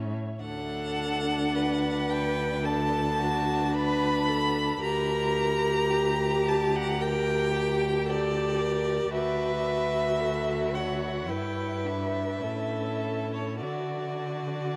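Viola and cello open this slow, romantic movement for string quartet in D major. The cello's bowed bass sits up front with a soft attack, vibrato and expressive portamento, while the viola supplies an even accompaniment with vibrato. At 0.4 seconds two violins join: the first carries the melody up front with a warm, smooth tone and light vibrato, and the second weaves a rich, expressive inner line with vibrato and portamento. The pulse hovers around 54 BPM in 4/4, but rubato keeps the beats uneven and gives the music a serene, tender feel. The harmony moves from D through Gm/D back to D, then passes through Em/G and A before settling on D, and a huge, wet reverb sets the quartet in a vast, echoing space in this passage cut from a longer piece.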